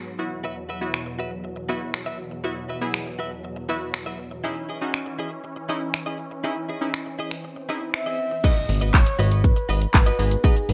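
Bright, 1980s-style digital production with light reverb frames this bittersweet, driving dance-pop excerpt, where a glassy wavetable pluck with chorus and a filtered supersaw swell of sustained chords both pump against the sidechain, while a clean, direct-recorded electric guitar plays a compressed riff through analog chorus. A punchy, up-front house kit of kick, hi-hats, handclaps, finger snaps, shaker and crash enters at 0.9 seconds, and a round, horn-like synth lead with vibrato, chorus and delay takes the melody from 7.9 seconds. A very quiet electronic swell leads into an impact as the supersaw stops at 8.4 seconds, and a fat, saturated analog bass joins, also pumping.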